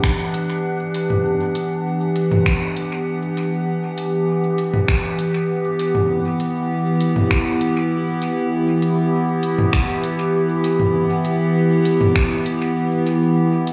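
A straight 99 BPM pulse in 4/4 carries this hazy, spacious ambient dub excerpt in E minor. A muffled, thumpy, pitched-down electronic kick anchors the beat until 12.3 seconds, while an up-front organic electronic kit adds crisp hi-hats, finger snaps and toms trailing into dub echo. Above them a warbling, nostalgic pad holds a sustained Em7 with slow attack and long release, its lo-fi, detuned tone thickened by chorus, phaser and built-in reverb, all set in a moderate concert-hall reverb with a touch of small-room ambience.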